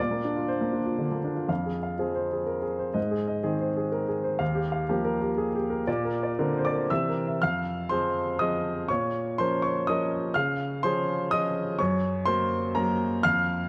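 Neoclassical minimalist piano in a melancholic, intimate mood, this excerpt from a longer piece features a solo baby grand piano, clear, natural and up front with long sustain, moving in a rubato triple metre through chords such as Bbadd9, Fm and a C7 before a change of mode at 7.4 s, all set in a moderate concert hall reverb with a dark production.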